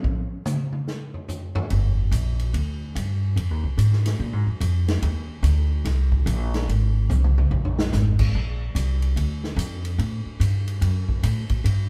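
A woody, pizzicato upright bass sits up front on steel strings, entering at 1.7 seconds after the drum kit opens this swinging, late-night jazz passage with a short solo. The natural-sounding kit, with its boomy kick and medium-tuned snare, works across ride, hi-hat, crash and toms, and adds a fill at 7.1 seconds. Moderate reverb places the kit in a big room, heard from further back, in this fragment cut from a longer small-group swing and bop piece.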